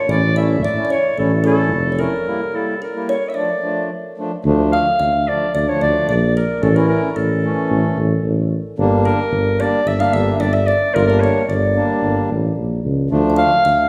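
A steady, straight 4/4 pulse at 111 BPM carries this bittersweet yet festive klezmer excerpt in D harmonic minor, cut from a longer piece. A clear, classical-style clarinet leads the melody up front, while a soft kalimba adds a second line of woody, ringing fingertip plucks. Beneath them, a reedy, close-miked accordion supplies round, dry accompaniment, and a mellow tuba with light vibrato and a smooth top anchors the bass. A break arrives at 2.3 s, and the music moves into a new section at 4.4 s, with the harmony passing through A, Edim and Dm and later reaching Gm. A wet recital hall reverb sets the ensemble further back in the room, giving the clarinet a distant, roomy sheen.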